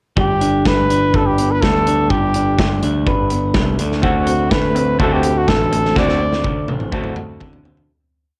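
Indie rock with a carefree, jangly mood, this short verse moves from G to D7 over a straight groove. A breathy, whispered trumpet sits up front with a mellow tone, light vibrato and a soft attack, singing a motif-based pop melody in intimate song phrases until 6.7 seconds. Beneath it, an electric guitar through a small old amp plays slightly broken-up, compressed picked arpeggios. A growling, bright picked bass, overdriven and locked to the kick drum, drives alongside a punchy, up-front acoustic rock kit playing an indie four groove with a medium-tuned snare. At 4.0 seconds a second guitar enters in the background, dark and lo-fi, adding palm-muted eighth notes soaked in lush chorus and tape echo. The home cassette recording, in a moderate booth ambience, gives the guitars and drums a tape-worn character, and the piece fades out from 6.0 seconds under a drum fill.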